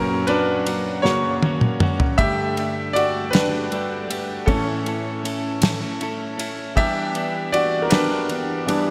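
A clear, polished concert grand piano leads this melancholic, dramatic six-eight pop ballad fragment, its deep bass and short sustain placed up front as it carries the solo over an F#, Gsus2, A, Em7 progression. A direct-recorded clean electric guitar picks compressed arpeggios colored by phaser and slapback echo, while a damped 70s drum kit with a fat snare and tight kick enters at 0.3 seconds and plays a fill from 1.0 to 2.2 seconds. A lush hall reverb gives the whole a big arena sound.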